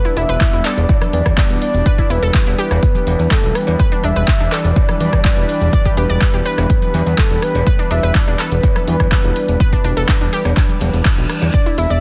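Progressive house with a bittersweet, driving mood, cut from a longer piece, where a soft, round synth lead carries the melody over a lush, detuned unison pad and a glassy wavetable pluck playing arpeggios through chorus and digital delay. A fat, nasal analog bass enters at 0.2 s and a punchy electronic kick sits up front, both joining an overdriven big-room drum kit with metallic hats, handclaps, ride, rim click and tambourine that plays from the start. Softer cowbell and congas sit in the background, a reverse cymbal appears at 10.8 s, and sidechain pumping moves the bass, pad and pluck within a dense, heavily limited, dry mix.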